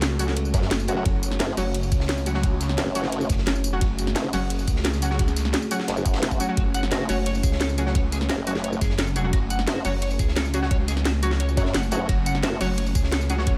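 Tense and aggressive, this dark technical drum and bass cut from a longer piece drives at 174 BPM in F# minor, sitting on a single F#m chord throughout. Two bass parts carry the weight up front: a thick, swirling phased detuned saw bass with overdrive, and a formant-sweep wobble bass with chorus and tube saturation that enters at 0.5 seconds alongside a knocking electronic kick. The drum and bass kit sits forward with a cracking snare, bright hats and tambourine, while a gritty, saturated breakbeat kit with dark cymbals and a rolled-off top rides in the background. Above them, a moody square-and-saw analog pad holds sustained chords with chorus, sampler grit and sidechain pumping, and a bold, punchy orchestra-hit-like synth stab cuts through with its own reverb, digital delay and grit. At 6.1 seconds a very quiet electronic swell leads into a clean, picked electric guitar playing dark arpeggios from 6.6 seconds, colored by analog chorus, digital delay and sidechain pumping. 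The whole mix sits in light reverb and digital ambience.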